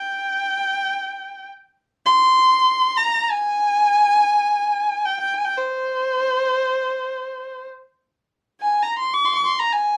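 Set in a moderate studio reverb, this stately, festive fragment of Persian modal music in free time features a solo bowed kamancheh, rich and focused, singing with vibrato and portamento in dastgah homayun on C for the full 10 seconds.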